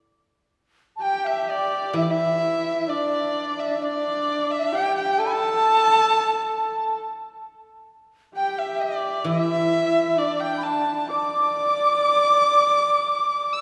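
In a free, rubato 4/4 around 65 BPM, this pastoral yet festive fragment of Chinese traditional chamber music opens at 1.0 seconds with a focused, boxy erhu carrying the melody up front, full of vibrato and portamento. A bright bamboo dizi with its buzzing membrane sits tongued and pure in the background, while an earthy, husky horsehead fiddle adds a nasal, biting second line with light vibrato. A guzheng played with fingerpicks rings out silvery accompaniment from 1.9 to 12.0 seconds, the whole ensemble heard from further back in a wet concert hall.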